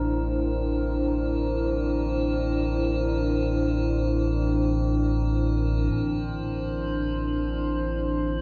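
Ambient, free-time and vast, this ominous fragment from a longer piece sets a dark analog pad holding moody, detuned sustained chords over a deep rumbling drone swathed in built-in reverb, phaser and lush chorus, while a metallic, inharmonic drone adds an eerie FM texture and a barely audible detuned synth bell traces decaying arpeggios, all centered on C inside a cathedral-like reverb, until a filter sweep moves through the synth drone from 5.9 seconds.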